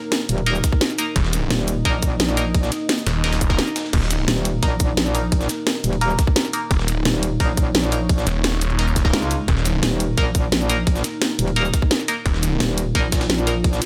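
Dark and aggressive, this excerpt of technical drum and bass at 173 BPM drives a tight up-front electronic kick and a cracking-snare kit with hi-hat, shaker and crash against a gritty sampler-style breakbeat kit of ride and snare in the background, while a metallic FM wobble bass churns alongside a snarling, growling distorted saw bass that bursts in at 1.2 seconds and again at 6.7 seconds, all framed by a deep, moody ambient pad with chorus and pumping and a nasal band-passed chord stab with phaser and dub echo, in a light digital ambience.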